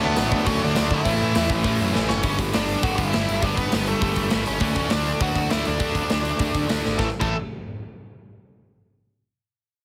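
A nasal lead guitar with a parked wah opens this short, rebellious punk rock fragment at 202 BPM in A major, its overdriven, picked melody sitting up front over a bed of bright, overdriven rhythm guitars playing riffs in the background, one of them a hollow-bodied semi-hollow and one double-tracked. Almost at once a fuzzed, picked electric bass and a big acoustic rock kit with a punchy kick, medium-tuned snare, hi-hat and bright crash cymbals join in, the drums placed up front in a big room. One of the rhythm guitars drops out at 2.2 seconds as the chords move from D and A to G, with drum fills marking the turns at 1.9 and 6.8 seconds. The energetic drive carries through D before landing on an A power chord near the end. The sound is dry and heavily squashed, with a dense, radio-style compression that makes the whole band hit hard.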